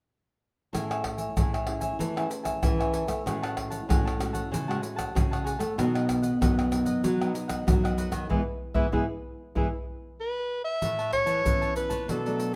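A joyful, sunny stretch of samba and choro cut from a longer piece, moving at a straight 95 BPM in 4/4 and centred on A major. A crisp, picked cavaquinho and a dark, fingerpicked classical nylon-string guitar share the accompaniment from 0.7 seconds, while a second, warm nylon-string guitar carries the bass line underneath. Egg shaker, deep surdo, pandeiro and tamborim sit up front with a close, small-room feel, and the harmony moves from Amaj7 through F#madd9/A and B to E, where the band hits a shared accent from 8.3 to 10.8 seconds. A breathy soprano saxophone enters at 10.2 seconds for a brief, intimate jazz-style solo with soft attacks, scooped notes, subtone and light vibrato, landing as the music turns to Aadd9. A moderate large-studio reverb gives the ensemble a gentle sense of space.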